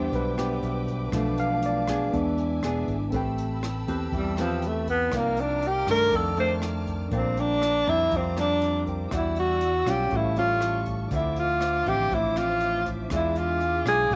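A light reverb and small-room ambience give this melancholic, wistful bossa nova fragment a close, intimate sound, cut from a longer piece. A barky, clean electric piano takes the opening spotlight, while a fingerpicked nylon-string guitar with a small, warm tone and a round, dark, amped fingered electric bass carry the accompaniment throughout. A jazz drum kit played with brushes enters at 0.1 seconds, with hi-hat, rim click and a boomy kick in a straight feel. Behind them, a lush bowed string section holds sustained chords with vibrato, portamento and a smooth top. At 4.2 seconds a breathy tenor saxophone steps up front with a mellow, whispered subtone, soft attacks, scooped notes and vibrato, leading the melody through rich extended harmonies such as Am9, F13 and E7b9.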